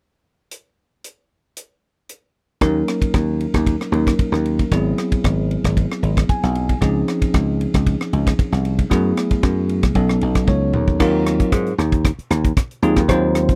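A dry, close 1970s-style studio sound frames this intense, funky electric jazz fusion, cut from a longer piece, at 114 BPM in Eb dorian: a tight funk drum kit with a natural small-room sound plays alone from 0.5 s; then a punchy, foam-muted thumbed slap bass and a bell-like, clean tine electric piano join at 2.6 s over chords moving from Ebm7 through Dbmaj9 and B9; the piano adds fills and the drums a fill ahead of the Ebm69 arrival at 11.0 s.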